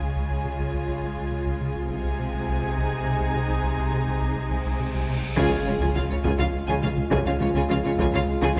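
A rubbery, hollow square-wave bass riff drives this brooding, futuristic stretch of hybrid orchestral and electronic film score in 6/8. A deep, punchy sub bass sits beneath it, with lush bowed strings: violins on a smooth second line, distant violas, cellos and very quiet double basses that first surface briefly at 1.9 s. A huge, bright cymbal swell builds from 4.6 s into an impact at 5.4 s, where clear violins take the melody over mellow French horn chords, a roomy tuba and very quiet taiko struck with hard sticks, set in a wet concert hall reverb.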